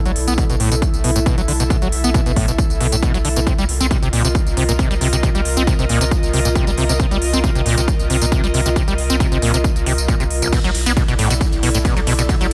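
A straight 4/4 pulse at 136 BPM drives this dark, industrial peak-time techno excerpt, anchored by an overdriven, heavy electronic kick that sits up front from 0.4 s, with a layered, overdriven kit of smooth hi-hats, ride, crash and tambourine pumping against it in a studio ambience. A screaming, squelchy sawtooth acid riff with resonant filter sweeps, distortion, chorus and delay dominates over a thick, saturated sub bass, while an airy, breathy detuned pad with a noise layer and ring modulation hovers softly behind. The harmony moves from B minor to C minor at 3.5 s and returns to B minor at 10.5 s, all within light digital reverb.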